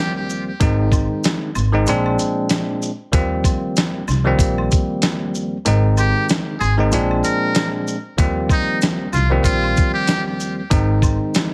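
A bell-like, clean tine electric piano with cassette-tape grit opens this confident boom-bap hip-hop excerpt in Eb major at 95 BPM, with a fleeting blip of muted trumpet at the very start. It is soon joined by a swung, dusty sampler-style drum kit with a thumpy kick and fat snare that sounds re-recorded in a large room, backgrounded maracas and woodblock, and a woody pizzicato upright bass. The kick then briefly drops out at 5.7 seconds, and a buzzy, breathy metal-muted trumpet takes a jazz-style solo from 6.0 seconds, all under a heavily compressed, radio-like sound with light reverb.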